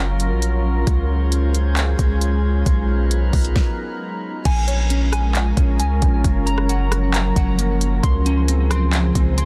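Spacious and hazy, this atmospheric cloud-rap excerpt moves in a half-time hip hop feel built on lush seventh chords. A dark, ethereal FM pad holds sustained chords through ensemble chorus, reverb and sidechain pumping, while a deep, sine-like 808-style bass with a fast attack and mellow decay sits up front. A faint, drifting glass-harmonics texture hovers in chorus and reverb during the opening, and a smooth, electronic R&B drum kit with a tape-warm, produced character brings a soft kick, fat snare, hi-hat, rim click, handclaps and crash. A stop arrives at 3.6 seconds, and at 4.5 seconds a clean, fingered electric guitar enters with scooped arpeggios shaded by analog chorus, low-pass filtering and digital delay. The mix is dry, dense and heavily limited in a modern style.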